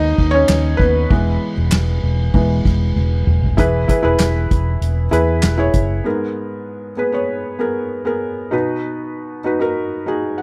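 A dry, close recording in a 1970s studio style frames this short excerpt of anthemic, piano-driven pop at 97 BPM in 4/4 with a straight feel. Up front, a felt-muted upright piano, mellow and intimate with audible action noise, takes a solo that leads into a drum fill at 3.0 seconds. A round, punchy, foam-muted electric bass and a soft-mallet kit with a boomy kick, dark cymbals, handclaps and toms support it until both have dropped out by 6.0 seconds, leaving the piano to carry the chords through to a brief fill at 10.1 seconds.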